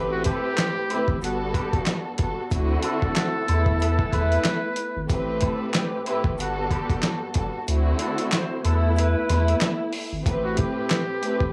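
A light reverb and a gritty, tape-warm sheen set the tone for this moody boom-bap hip-hop cut, which is taken from a longer piece and moves at 93 BPM in 4/4 with a swung sixteenth-note feel in A dorian. A sampler-style soul drum kit sits up front with a thumpy kick, a medium-tuned snare, hi-hat and handclaps, while a tube shaker and woodblock tick along in the background. Underneath, a round analog bass holds down the low end with a deep, dark, sustained tone, and a lush bowed string section plays expressive accompaniment with vibrato, portamento and plate reverb. A buzzy trumpet in a metal mute carries the breathy, jazz-style melody until 5.1 seconds, then returns at 10.4 seconds, as a mellow, vintage horn section adds stabs coloured by slapback echo. The chords cycle through Am7, Gmaj7, D7 and Esus4, and the kick drops out from 7.7 seconds until the progression lands back on Am7 at 10.3 seconds.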